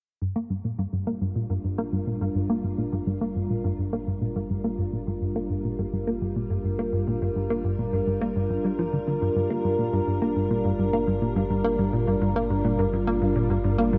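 Ambient, sequencer-driven space music in G minor at 105 BPM, cosmic and expansive, where a punchy, funky analog bass riff with a filter pluck, lush chorus, analog delay and a filter sweep sits up front from 0.2 seconds over a Gm7 chord, a round sine sub bass fades in beneath it, and an evolving, detuned wavetable pad enters at 0.9 seconds with slow-attack sustained chords, chorus and its own reverb, all inside a huge ambient space in this section cut from a longer piece.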